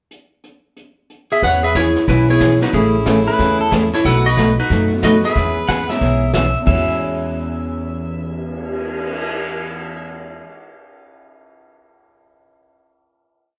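A live band in one room, bathed in wet studio reverb, gives this swinging country and western swing piece a playful feel. After a brushed pickup of snare backbeats and sweeps on a dark, tight vintage kit, an up-front clean lap steel enters at 1.3 seconds with a motif-based melody partly doubled in sixths. It is joined by a fiddle with light vibrato carrying a harmony line mostly in thirds, a bright dreadnought acoustic guitar picking four-to-the-bar rhythm with audible finger squeak, and a thumpy gut-string upright bass playing two-beat root and fifth; a slightly detuned, woody upright piano adds syncopated comping from 2.3 seconds, and a compressed pedal steel slips in at 3.3 seconds with volume swells and answering blues licks before the band settles on a final chord.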